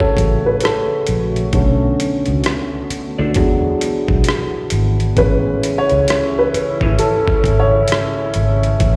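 Soulful and relaxed, this short cut of neo-soul R&B sits at a slow 66 BPM in A major with a swung sixteenth feel, led by a dark, woody upright piano that solos up front through the whole passage with a touch of slapback echo, over a hollow, flute-like pad with ensemble chorus in the background. A gritty boom bap sampler-style kit with a thumpy, overdriven kick and rim click plays from the start, joined by a round, foam-muted electric bass from 0.2 seconds, while a slightly broken-up guitar through a small old amp adds a phased, delayed second line from 3.2 to 7.0 seconds. Tight, clear trombone stabs with light vibrato arrive at 5.2 seconds as the chords move from Amaj7 through Bm7 and E7 back home, all heard as a live gig through the venue's PA with recital hall reverb.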